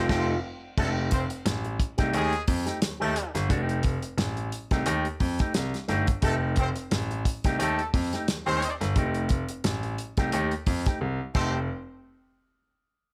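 A bright, twangy electric guitar with an envelope filter plays the accompaniment over a single F9 chord in this strutting, funky 88 BPM excerpt in F mixolydian with a lightly swung sixteenth-note feel, joined by a clear horn section with light vibrato and octave doubling on a second line, an up-front, natural grand piano carrying the bass, and a warm soul drum kit with a tight kick and dark cymbals in a small room, as the band opens on an accent and the drums close with a fill at 11.0 seconds under light studio reverb.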